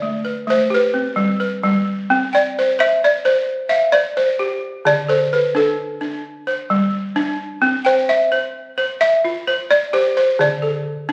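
West African traditional music in a flowing, joyful 12/8 at 87 BPM in C major, cut from a longer piece, where an up-front balafon struck with hard rubber mallets carries a dark, smooth, buzzing melody between A4 and E5 over a second balafon's woody, mid-forward arpeggios spanning D3 to G5, the two heard through a moderate recital-hall reverb in a phone recording made in the room.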